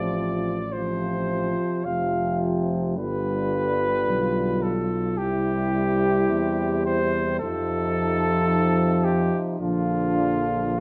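A mellow cornet carries the lyrical melody up front, its smooth top and light vibrato giving this tender, hymn-like brass band passage a gentle, singing voice. Behind it, a French horn section adds a soft-attacked second line with its own vibrato, sitting in the background as an ensemble cushion. A close-miked euphonium and a more distant, roomy trombone fill out the accompaniment, both warm and lightly vibrating, while a tuba anchors the bass. The rubato phrasing in 4/4 lets the harmony move unhurriedly from F/A through G7, C and F7 before arriving on Bb at 9.6 seconds. A moderate stone-room reverb surrounds the players, and the passage is cut from a longer classical piece.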